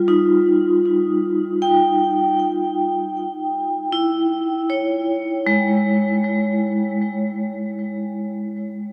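Set in a straight 4/4 at 78 BPM, this ambient fragment, cut from a longer piece, carries a reflective, melancholic mood. A solo vibraphone struck with hard mallets plays across its whole 8.9 seconds, ranging from G3 to G5 and sitting up front with a metallic, airy ring and a fast motor vibrato, its notes trailed by delay. The harmony rests on Ebadd9 before moving to E6 at 3.2 seconds, opening a second passage that lasts to the end. A huge, wet reverb with an 8.5-second decay surrounds the instrument. The sound has the worn, warbling character of old cassette tape, with a warbly pitch drift that adds an unsteady quality.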